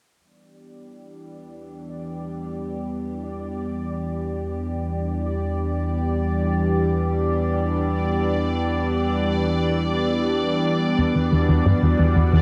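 Ambient, sequencer-driven space music in free time and E minor, cosmic and mysterious, this short cut from a longer piece rests on a single Em7 chord, with a round, deep analog bass, a bubbling stepped-filter texture with resonant random filter steps, and an evolving wavetable pad, all fading in from 0.2 seconds. The up-front pad morphs slowly through detuned unison tones with chorus and built-in reverb, while the high texture glimmers through chorus and shimmer reverb. At 11.0 seconds a tight, driving sequenced synth riff enters low and up front, its detuned sawtooth pluck softened by chorus and tape echo, all set in a huge, wet ambient reverb.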